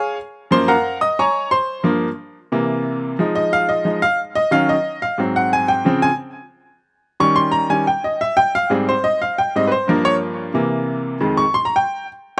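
Fiery and sophisticated, this short jazz passage, cut from a longer piece, features a solo upright piano with a brilliant, woody tone and audible action noise, played with a straight feel across a span from F2 to Eb6 over rich chords such as Gbmaj9, Dbmaj7 and Gm7b5 before arriving on Fm7 at 11.2 seconds, its intimate, up-front sound dry and outdoors, touched by a slapback echo.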